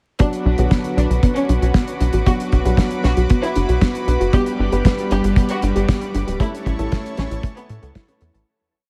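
A dry, tight four-on-the-floor kick sits up front in this short, complete italo disco piece at 116 BPM in B minor, danceable and nostalgic in mood. Beside it, a punchy sawtooth-and-square sequencer bass drives a galloping sixteenth-note line from 0.5 s, while a damped 70s kit adds closed hi-hat and a fat snare in a disco machine beat. Behind them, a lush, detuned unison pad holds bright sustained chords with chorus, and a warbly, lo-fi pluck runs a mellow four-step arpeggiated sequence through chorus and diffuse ambient delay. An intimate, smooth concert grand piano, low-pass filtered and given a filter sweep, plays held chords with syncopated pushes in close voicing, its action noise audible, as a distant studio violin section with vibrato repeats a riff melody. The harmony moves from Bm to G to A in a dreamy mix soaked in huge reverb and vinyl crackle, fading out from 5.7 s to the end at 8.5 s.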